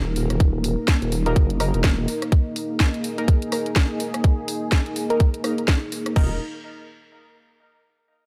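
Dry and close, this bouncy, swaggering bass house excerpt with swung 16ths opens on a deep, moody sawtooth pad and a nasal, saturated wobble bass that drops out at 2.1 s and returns at 6.2 s, while a tight, up-front electronic kick and an overdriven garage kit with a cracking snare, hi-hat, rim click and crash drive the groove beneath a bright, detuned band-passed chord stab that enters at 1.3 s, pumping through phaser, delay and a filter sweep.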